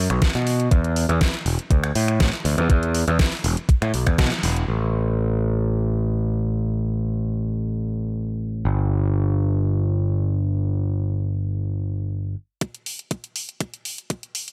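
Set in a straight 4/4 at 121 BPM, this sleek, groovy nu-disco fragment opens with a growly, bright overdriven picked bass up front, a thumpy overdriven electronic kick and a layered, produced pop kit with a deep snare, snaps, hi-hat, toms and crash. After a band accent at 4.2 seconds, the drums drop away at 4.8 seconds, leaving the bass to carry the groove. The bass falls silent just before the drums return at 12.6 seconds with a fill that builds up to the end of the fragment, all in a dry, close sound.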